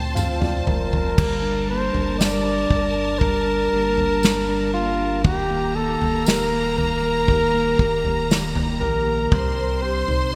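A slow, straight 4/4 pulse carries this heartbroken pop ballad. It opens with a drum fill from an unplugged kit played with bundle sticks, its tight kick, medium-tuned snare, toms and crash cymbal sounding like a small room, while a tine electric piano adds a fill of its own. From about 0.7 seconds a mellow flugelhorn takes the solo melody up front, jazz-styled with light vibrato. Its longing line sits over a bright, intense violin section bowing a second line with vibrato. The clean, direct electric piano carries the accompaniment, a picked jumbo steel-string acoustic guitar sets full-bodied arpeggios in the background with an ensemble chorus, and a round, deep sine sub bass holds the low end with sustained notes. A jingly, compressed and saturated tambourine sits in the background until about 8.5 seconds, while minor chords with added ninths, a moderate lush hall reverb and 1980s-style digital production give this excerpt its polished sheen.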